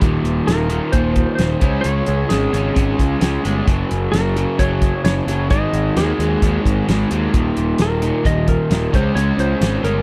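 A straight 4/4 groove from a damped 70s drum kit, with a fat snare and tight kick, drives this swaggering classic rock fragment alongside a round, punchy fuzz bass. A bright, crunchy double-tracked guitar riff rides over chords of Eb5, Db5, Gb and Ab5, while a clean, compressed, twangy lap steel slide melody enters at 0.5 seconds. The sound is dry and close in a 1970s studio manner, with the drums, riff and bass sitting up front.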